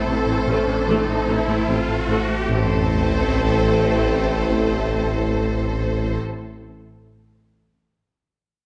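A hybrid orchestral and electronic film score cue in A minor, brooding and tense, moving at a slow 75 BPM in a straight 4/4 over a single A minor chord. Symphonic violins carry an expressive, vibrato-rich melody with a second, smooth and even violin line beneath it, while a very quiet, focused viola section and a silky sawtooth string pad with ensemble chorus hold the harmony, joined by a mellow, tight French horn section. The low end is heavy and layered, with a deep sine sub bass, a dark, woody cello and double bass section, and a present tuba sustaining the root, while a round analog bass riff and a gentle, tine-like FM pluck playing arpeggios appear only briefly near the start, stopping by about 2.4 seconds. An electronic riser builds through the opening until an impact lands at 2.5 seconds, marking the shift into the cue's second section. A wet recital hall reverb surrounds the ensemble, and the clip is cut from a longer piece.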